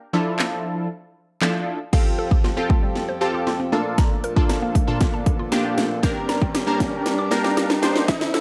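A funky, detuned sawtooth polysynth comp opens this summery, carefree dance-pop excerpt at 0.1 s, sitting up front with chorus and sidechain pumping at 117 BPM in F major. A punchy, overdriven house kit soon joins, with a cracking snare, handclaps, hi-hat and crash. From 1.9 s a build-up begins with a drum fill and filter sweep, as a reedy, breathing harmonium holds sustained chords and a woody, round FM pluck with digital delay plays arpeggios in the background, while the harmony moves from Fadd9 through Bbmaj7 to Gm; a very quiet electronic riser enters at 4.3 s, and the mix carries light reverb and a high-pass filter.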